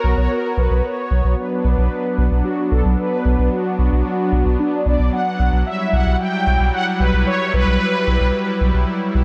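A lush hall reverb gives this short, cinematic synthwave excerpt a big arena sound, with all three parts sitting up front. At a straight 112 BPM in 4/4 and in B minor, the mood is moody, moving from an F#/B chord at the start to Bm at 1.4 seconds and Emadd9/B at 5.7 seconds. A deep, round analog bass holds a low B1 throughout, its sine-like tone dark and sustained with a fast attack. Above it, a smooth, detuned sawtooth pad sustains bright chords treated with chorus and tremolo. The melody comes from a mellow, brassy synth lead with a filter sweep, running from D4 to G5 and coloured by chorus, phaser, slapback echo and digital delay.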